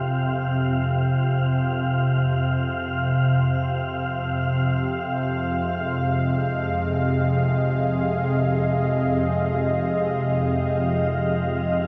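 An up-front, organ-like drone warbles in the low register with detuned ensemble chorus, anchoring this ominous, desolate dark ambient excerpt in free time and F minor. A deep, full-bodied analog pad with chorus and shimmer reverb fades in across the full 11.9 seconds, holding sustained chords that move from Fm to Fm7 at 3.8 seconds, while a faint, breathy, wind-like noise texture also fades in high above through its own shimmer reverb. A wet spring reverb gives the space a long, lingering tail.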